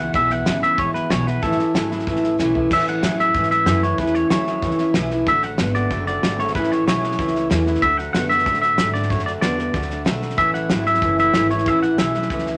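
Rollicking and rowdy, this rockabilly excerpt charges along at 187 BPM in A major, with an up-front, compressed, twangy electric guitar carrying the clean fingered melody over a slightly broken-up picked riff from a second electric guitar through a small old amp, a full-bodied jumbo steel-string acoustic picking out the accompaniment, a woody pizzicato upright bass on gut strings, and a cloth-damped, thuddy drum kit with dark cymbals and a fat snare that throws in a fill at 2.4 seconds, all set in moderate studio reverb as the chords move between A and D.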